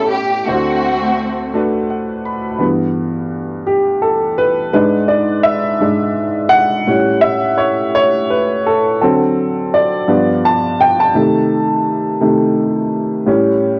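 Soulful and uplifting, this short gospel passage in a straight-feel 6/8 opens with a studio string section carrying the melody in a low-to-middle register, its bowed ensemble sound expressive with vibrato, portamento and a smooth top, set up front with plate reverb and a cassette-tape character. The strings drop out at 1.5 seconds, and the upright piano, present as accompaniment from the start, steps forward with a fill before taking a solo from 2.6 seconds to the end of the cut. The piano's woody, slightly detuned and vintage tone sits close and intimate under plate reverb, ranging from deep bass notes to bright upper keys. Rich gospel harmony moves through chords such as D7, G6, E7/G#, A7 and Cm6, giving the solo a churchy, hopeful lift. The whole has the homespun feel of a home cassette recording in a small, moderately reverberant room.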